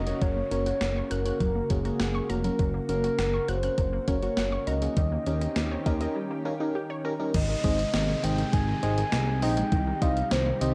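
A dark, lightly reverberant synth-pop production with a digital ambience and a nostalgic, wistful mood, cut from a longer piece. A round, octave-layered synth lead with chorus, phaser and analog delay carries the melody over a thick, vintage unison pad, a punchy pluck playing arpeggios with delay, a smooth gliding bass up front, a glassy, bell-like FM electric piano accompaniment and an electronic downlifter and swell in the background. A thumpy, overdriven 80s drum machine with a gated-reverb snare and crash cymbal sits up front, and a break at 6.2 s brings an electric piano fill before the next section begins at 7.3 s.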